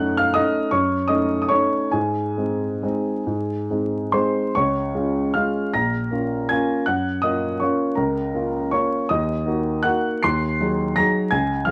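Playful and sparkling, this short classical piano waltz is a fragment cut from a longer piece, moving in a lilting three-beat metre with a free, rubato feel. A solo upright piano carries everything from 0.0 to 11.7 seconds, its woody, warm tone sitting up front with long sustain, and it ranges from a deep Bb1 up to a bright C7. The opening harmony leans on a half-diminished Ebm7b5 over Gb before resolving to Ab. A new passage begins at 4.5 seconds on Db, then drifts through Bbm, a lush Gbmaj7 and Ebm before settling on Ab7 over Eb. A moderate large-studio reverb gives the instrument a roomy glow, while a layer of vinyl crackle and a dulled top end lend the recording an aged, nostalgic patina.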